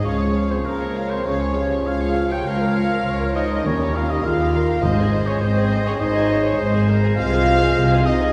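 The mellow French horn section holds sustained chords beneath this stormy, dramatic excerpt from a quick classical-period movement in Ab major at 102 BPM with a rubato feel, where warm, sul tasto violins carry the melody over a second line shared by another violin section, a warm oboe, a bright clarinet and a very quiet flute section, while a mellow bassoon and background violas accompany, a dark cello section and clear double basses form the bass, a dark trumpet section adds distant stabs, and timpani enter from 3.7 to 5.7 seconds, all set in a wet scoring-stage reverb heard from further back in the room.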